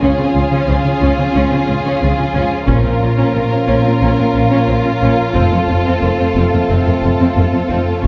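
Heavy-stick taiko drums strike from 2.7 to 4.0 seconds and again at 8.0 seconds in this epic, relentless cinematic orchestral score at 90 BPM, where a lush violin melody with smooth vibrato and a softly attacked second violin line ride above expressive viola accompaniment with portamento, dark French horn chords in the background, woody cellos and rich, distant double basses, all moving through Db, Bb minor and F in a wet scoring-stage reverb heard from further back in the room.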